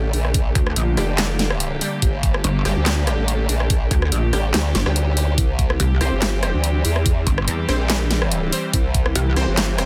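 Aggressive and heavy, this half-time wobble dubstep excerpt in G dorian at 143 BPM pairs a saturated formant-sweep wobble bass and a detuned, pulsing pluck wobble bass with a knocking kick and a huge-snare drum kit of handclaps, hi-hat and rim click, all up front, while an evolving, wave-folded wavetable pad with sidechain pumping holds sustained chords moving from Gmadd9 to C at 5.4 seconds and a bold, orchestra-hit-like synth stab with phaser and digital delay enters at 1.0 seconds in the background of a digital ambience.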